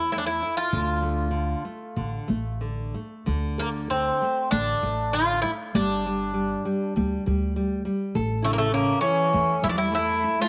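A picked Greek bouzouki leads this mournful, passionate fado-style ballad in D minor, its doubled metallic strings sitting up front with a cassette-tape color as it carries the melody between A3 and F4. Beneath it, a full-bodied nylon-string guitar fingerpicks a deep classical accompaniment, while a pizzicato upright bass adds a woody, thumpy low end. The tempo drifts with a rubato feel somewhere between 88 and 103 BPM in 4/4, the harmony moving through A5, D5 and G5 before settling on A. At 8.4 seconds a dark cello enters as a second line, its bowing airy and sul tasto with light vibrato and a soft attack, heard close, intimate and a little boxy. A moderate spring reverb and the character of a home cassette recording frame this short passage, cut from a longer piece.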